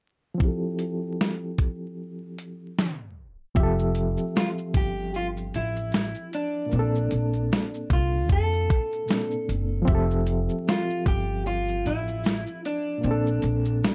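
Vinyl crackle and a short small-room reverb frame this cosy, mellow lo-fi hip hop excerpt, where a barky, overdriven reed electric piano with fast tremolo and a filter sweep opens over a gritty, compressed sampler-style drum kit with a thumpy kick, a tape stop at 2.8 seconds gives way to woody pizzicato upright bass from 3.6 seconds, and a dark, slightly broken-up electric guitar with tape echo carries the melody from 4.4 seconds over Fmaj7 and Bbmaj9 chords.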